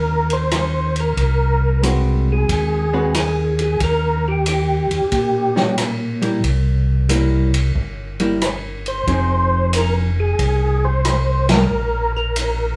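A percussive tonewheel organ leads this swinging, bluesy soul jazz organ trio excerpt at 91 BPM. Its up-front, round melody, treated with chorus vibrato and a slow rotary speaker, sits over a dark, mellow organ bass line, while a distant, roomy big-band drum kit swings behind them with a punchy kick. A clean, compressed hollow-body archtop guitar comps from 1.8 to 10.1 seconds through changes from Ab7#9 to Fm7, and the band hits an accent at 11.4 seconds before the chords drop out, all within a light reverb.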